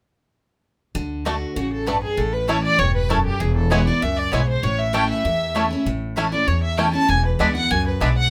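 A brisk, straight four-beat pulse propels this bluegrass passage, cut from a longer piece, with a virtuosic yet rustic character. The upright bass and a picked dreadnought acoustic guitar enter together at 0.9 seconds: the pizzicato bass sits up front, thumpy and woody, and the guitar sounds bright and full-bodied with audible finger squeak. From 1.3 seconds a twangy, percussive fingerpicked banjo carries the melody while a mandolin adds double-string stabs. At 1.6 seconds a dark, bowed fiddle with light vibrato joins the lead up front, as a second fiddle, clear, smooth and even, traces a softer line in the background. The harmony moves from D through A and E before landing on E7, and light reverb gives the band a modest sense of space.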